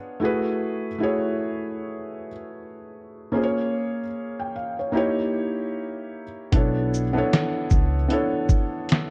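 A loosely swung 76 BPM lo-fi hip hop groove in B dorian opens on a soft, felt-muted upright piano with cassette-tape character, comping hazy, nostalgic chords from F#m11 through A#m7 and D#7b9 until a woody pizzicato upright bass and a muffled, thumpy, sampler-gritty drum kit of kick, snare, hi-hat and shaker arrive at 6.5 seconds on Bm11, all bathed in a dark plate reverb in this brief cut from a longer piece.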